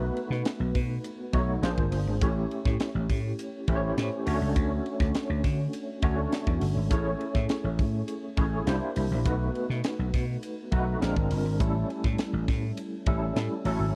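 Breezy and urban, this short excerpt from a longer piece is polished 1980s jazz-funk pop at 102 BPM in 4/4 with a straight feel, set in A major. An overdriven tine electric piano carries the accompaniment from the first moment to 14.0 seconds, its barky, gritty tone run through a combo amp with fast tremolo and ensemble chorus, moving between F#3 and C#5. A vintage slap bass sits up front, electric and amped with a growly bite, ranging from G1 to D3. A tight funk drum kit enters at 0.2 seconds, an acoustic kit in a small room with a high-tuned snare, tight kick, hi-hat and ride cymbal, mixed mid-forward and up front. The harmony moves through colorful chords such as B7, Bb9, A7, Dmaj7, Amaj7 and C9, and the whole has a dry, close 1970s-style studio sound with little reverb.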